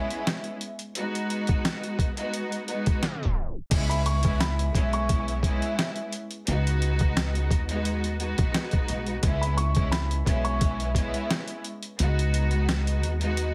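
Boom-bap hip-hop in C# minor at 87 BPM with a reflective, tough mood, this cut from a longer piece pairs a lush, bowed symphonic string section, filtered and up front, with a dark, pizzicato upright bass on gut strings and a gritty, pitched-down sampler drum kit of thumpy kick, snare, hi-hat and crash, while an intimate upright piano with audible action noise and delay adds brief high melodic phrases from 3.9 seconds, set in a heavily compressed radio sound with light reverb, a tape stop at 3.0 seconds and the kick muted from 12.0 seconds.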